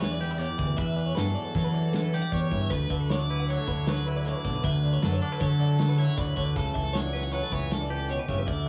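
From the first beat of this short cut from a longer piece, a wistful, intricate math rock and midwest emo groove in 5/4 at 156 BPM moves through Em9, D69 and A13/C# in D major, with a growling, overdriven fingered bass sitting up front, a clean twangy guitar playing accompaniment, a bright twelve-string guitar picking tremolo-treated arpeggios, an overdriven lead guitar carrying the melody through analog delay, and a loose indie drum kit of hi-hat, tight kick and medium-tuned snare in a small, pumping room, the three guitars and the drums tinted by cassette tape in a dry home recording.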